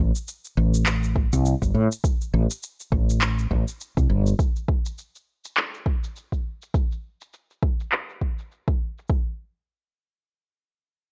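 A round, hollow-bodied fretless electric bass sits up front with a woody tone and sidechain pumping, playing from the start until 4.3 seconds in this meditative organic downtempo excerpt in A minor pentatonic at 102 BPM. Overdriven electronic cabasa and handclaps, low-pass filtered and set in a small room, enter almost at once, and a deep, gritty electronic kick joins at 1.2 seconds, all moving over a loose 16th-note swing. A digital ambience surrounds the parts, giving the groove a calm, inward glow.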